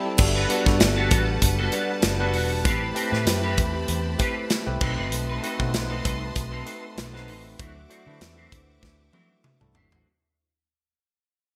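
A band accent opens this short cut from a longer piece, with tine electric piano and a lush, bowed string section sounding together from the very start. It is polished 1980s jazz-funk pop with a lightly swung sixteenth-note feel and a bittersweet, nocturnal mood, and the whole passage plays under a fade-out. A bright, twangy clean electric guitar with analog chorus plays a picked riff, while the electric piano, touched with subtle chorus and heard through its built-in speakers, carries the accompaniment. Beneath them, a dark, round, foam-muted fingered bass holds the low end, and an up-front acoustic drum kit with a punchy kick, medium-tuned snare, hi-hat, crash and toms is dressed in gated reverb, closing with a fill from 8.8 seconds. The strings sustain focused chords with vibrato and a smooth top, over a progression moving through Gmaj9, Am9, B7b9 and D9. The sound is bright 1980s-style digital production, with a moderate plate reverb and small room ambience.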